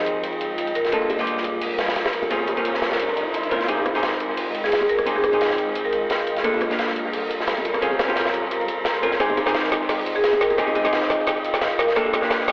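Driven by a 174 BPM liquid drum and bass groove in 4/4 with a light swing on the sixteenths, this soulful, melancholic excerpt in F minor cycles through ninth chords on F, G and B-flat minor. Up front, a crunchy breakbeat kit with dark cymbals, a medium-tuned snare and a gritty, saturated, rolled-off character carries the beat, while a layered electronic kit with a woody snare and metallic hats sits in the background, both touched by tape echo. Tight, high-tuned bongos played with soft hands add percussion from 1.0 seconds, and a clean, hollow-body archtop guitar, picked and also up front, supplies accompaniment. A shimmering, ethereal pad holds detuned, granular chords with an octave-up glow under a filter sweep until 3.7 seconds, where a very quiet electronic riser, rising from 2.7 seconds, gives way to a build-up. Bright, airy marimba phrases struck with hard mallets drift in and out through tape echo, and a drum fill arrives at 9.2 seconds. 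The whole mix is echo-heavy and narrowed to a telephone-like tone, wrapped in wet spring reverb and small room ambience.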